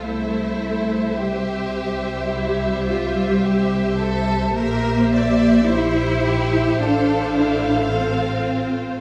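Moving in a free, rubato 4/4, this tender excerpt from a slow romantic movement for string orchestra sets a dark, distant violin section on the melody while a smooth, even second violin line and close, softly attacked violas with portamento fill the middle. Expressive cellos carry the bass, sitting forward in the blend, joined at 0.1 s by a rich, distant double bass section, and every section plays bowed with vibrato. The lush harmony rests on C before shifting to C7/Bb at 4.6 s and F/A at 6.8 s, all bathed in the wet reverb of a recital hall.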